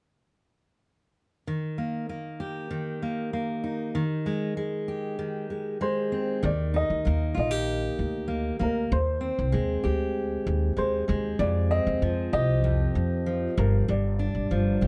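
A fingerpicked steel-string acoustic guitar, full-bodied and up front, opens this easy-going, heartfelt pop excerpt in Eb major at 97 BPM at 1.5 seconds, a dark, mellow upright piano with short sustain carries the melody from 5.8 seconds, and a thumpy, woody pizzicato upright bass joins at 6.4 seconds as the harmony moves through Abmaj7, Fsus2 and Gm7 under light reverb.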